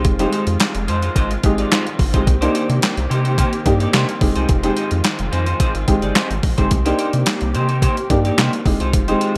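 A straight 4/4 groove at 108 BPM drives this short excerpt of early-eighties boogie funk, anchored by a clean 12-bit drum machine that sits up front with a thumpy kick, a medium-tuned snare, handclaps and hi-hat, its sampled hits carrying a tape-warm, roomy thump. Beneath it a rubbery square-wave bass bounces with a fast filter pluck and a moving notch, giving its low notes a hollow, sustained body. A semi-hollow electric guitar plays a clean, picked riff coloured by analog chorus, while a baby grand piano supplies mellow, boxy accompaniment with short sustain, audible action noise and a subtle chorus. Far back in the mix, a studio string section holds lush, woody bowed chords with vibrato. The harmony alternates between Fm7 and Cm7 under light reverb and bright digital production, leaving a slick, late-night mood.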